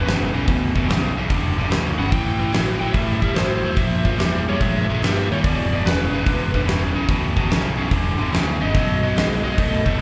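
Smoky and gritty, this cut from a longer blues rock and southern rock power-trio piece swings at 145 BPM in E minor, with a bright overdriven slide guitar played with fingerpicks singing the melody over a biting, double-tracked picked riff guitar, both carrying slapback echo. A growly fuzzed, overdriven fingered bass and a huge arena kit with a fat snare and punchy kick drive it all, heard as a live gig through the venue's PA with recital-hall reverb and a touch of small-room ambience.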